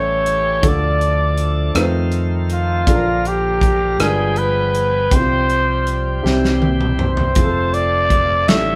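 Soulful and uplifting, this slow gospel passage in 6/8 sets a raspy, growling trumpet up front on the melody over a baby grand piano's short-sustained accompaniment, a bright, shouting tonewheel organ with light overdrive and a slow rotary speaker holding chords, a dark, round fingered electric bass, and an acoustic studio drum kit with a punchy kick that enters at 0.3 s and plays a fill from 6.2 to 7.4 s, the band heard together in one room with moderate reverb.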